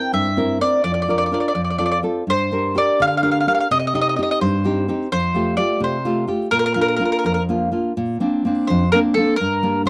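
Italian folk serenade in 6/8, romantic and sunny, cut from a longer piece. A round, picked mandolin with doubled strings carries the melody up front, while a full-bodied, fingerpicked nylon-string guitar with a deep classical tone and audible finger squeak accompanies throughout, moving through chords such as Gm, Cm and Fadd9 before reaching Bbadd9 at 8.0 seconds. The sound is dry and close, like a 1970s studio recording.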